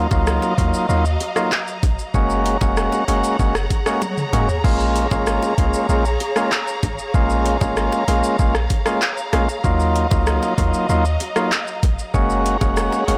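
A straight, bouncy dancehall groove in 4/4 rides on an electronic island pop drum kit with a knocking kick, metallic hats, handclaps, rim clicks, shaker and a brief fill at 4.0 seconds, while very quiet, high-tuned bongos sit close and dry beneath it. A deep, boomy 808-style bass and an up-front percussive tonewheel organ with key click carry the hypnotic cycle of Ebmadd9, Gbadd9 and Bbm7 chords, as a lush bowed string section with vibrato pumps behind them. The whole recording is blown-out and overdriven under light reverb, cut from a longer piece.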